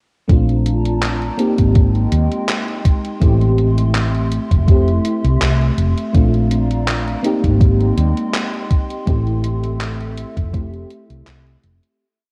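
Dreamy and faded, this short vaporwave piece drifts at 82 BPM in 4/4 with a gentle sixteenth-note swing, cycling through Bbmaj7, Abmaj7 and Fmaj7 chords under a cassette-tape haze. A soft, round FM electric piano holds rootless chords with syncopated pushes, its tone thickened by ensemble chorus and analog delay. Behind it, a warbly tape-like pad enters at 0.6 seconds, a detuned, nostalgic layer with a slow attack, long release, chorus, reverb and a gritty 12-bit sampler texture. Up front, a woody fretless electric bass plays a growly, hollow-bodied dub-style line. The drums are a slow, thumpy overdriven machine kick, which stops at 10.7 seconds, and a slowed pop beat of closed hi-hat and handclaps from a gated 80s drum machine with gated reverb and overdrive, both re-recorded in a small room. The groove runs throughout before a fade-out from 8.1 seconds to the end.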